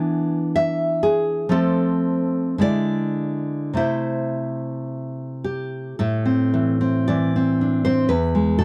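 Wistful and melancholic, this brief romantic excerpt in A minor for solo nylon-string guitar moves in a rubato 2/4 at around 51-64 BPM, its full-bodied, fingerpicked tone sitting up front in a dry, close 1970s-style studio sound where finger squeaks can be heard, passing through E7, F, E7/D and Am/C before shifting at 6.0 seconds to a new section that settles on Am and closes on E.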